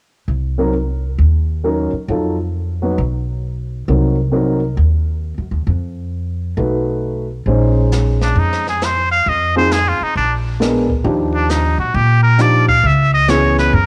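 A nasal, straight-muted trumpet takes the solo melody from 8.2 seconds, its vibrato, scooped notes and bright, smooth top sitting up front in this moody, cool excerpt of small-group swing and bop jazz. Before it, a woody pizzicato upright bass and a dark, mellow baby grand piano with a cassette-tape colour move through half-diminished, altered dominant and minor eleventh chords, and a brushed drum kit with a boomy kick, also tape-tinged, joins at 7.5 seconds. The home cassette recording carries a light reverb.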